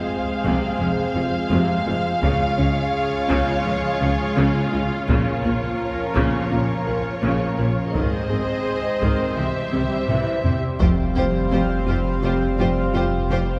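Relentless and brooding, this cinematic excerpt blends orchestral and electronic film scoring at 84 BPM in a straight 4/4, set in F minor. A shimmering, retro pulse-width pad sits up front with sustained chords, while violins carry a smooth second line and violas add expressive accompaniment with portamento. A rich cello section and a double bass section in the background anchor the bass, joined by a round, tine-like synth pluck whose chorused arpeggios stay mellow behind the strings. A taiko ensemble struck with heavy sticks drives the piece, playing a fill from 9.7 to 10.8 s, while the harmony moves through Fm, Db, Bbm and Ab to C before landing on Fsus2. At 10.8 s a focused violin melody enters alongside distant, dark French horns and a deep, saturated sub bass, all bathed in a wet church reverb.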